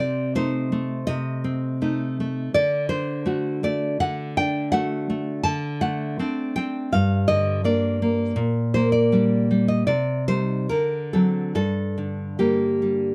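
A dark production with a light touch of reverb places a fingerpicked nylon-string guitar up front, its tone deep and intimate in this short excerpt from a longer romantic piece for solo classical guitar. Played with a free, rubato feel, the guitar moves from a diminished opening chord to D at 2.5 seconds before settling into a passionate minor progression that resolves home at 11.6 seconds.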